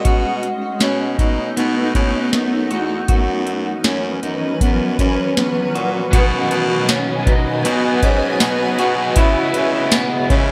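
Floating and blissful, this dream pop excerpt sets a blurred, detuned granular cloud pad and a clean electric guitar's picked arpeggios, shimmering with chorus and digital delay, over a growling, raspy baritone saxophone bass line and an up-front booming analog drum machine with a deep kick, crisp snare and gated reverb, before a bright, overdriven cranked stack guitar with tremolo joins at 6.1 seconds amid the glossy 1980s-style digital sheen and plate reverb.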